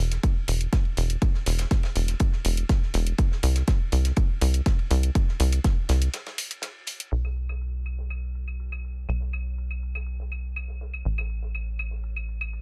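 A punchy, up-front electronic kick drives this melodic techno excerpt at 122 BPM in a straight 4/4, with a melancholic yet driving mood, but it drops out at 5.7 seconds. Beneath it, a tight sequencer bass runs throughout in a low register. Its sawtooth and square-wave tones have a fast-attack filter pluck that decays mellowly, and a moving notch and sidechain pumping give it a steady breathing push. Electronic hi-hats and claves sit further back, layered, tape-warm and low-pass filtered, with the small-room character of a re-recording. Underneath, a faint acoustic soul kit adds a smooth ride cymbal and a medium-tuned snare, both dry and dark with a rolled-off top, the cymbals also pumping with the sidechain. A brief break from 6.1 seconds leads into a second section at 7.1 seconds, and the whole mix stays close and dry, with little reverb.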